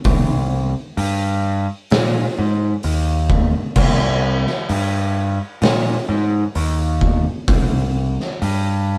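A live, single-room sound with light reverb gives this short cut from a longer stoner and doom metal piece a close, physical presence. The growling picked electric bass sits up front with a bright, direct and amped tone, its overdrive pushing it forward as it moves between C2 and Bb2 across the full 9.0 seconds. An oversized, low-tuned acoustic drum kit shares the foreground, heard in a bright stone room, with a dark, smooth and gritty character, a punchy kick, a fat snare, a hi-hat and dark crash cymbals, all carrying a saturated edge. The slow, straight feel in 4/4 makes the groove hypnotic and ominous, and the drums drop out at 8.6 seconds, leaving the bass to ring on briefly.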